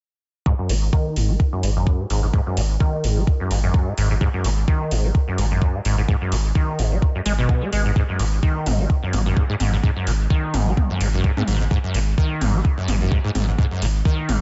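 Awash in echo and light digital ambience, with a dark top end that stops at 7.8 kHz, this raw, hypnotic acid house excerpt runs at 128 BPM with swung 16ths in G# minor pentatonic, sitting on a G#7(no3) chord. From 0.5 seconds, a squelchy, resonant sawtooth acid bass riff with a filter sweep sits up front, colored by ensemble chorus, cassette tape and dub echo, beside a thumpy kick re-recorded in a small room. A deep, thick sine sub bass with tube saturation and sidechain pumping, plus an analog drum machine whose metallic hats and toms ring in a large room, join at 0.7 seconds, and both drum parts are overdriven.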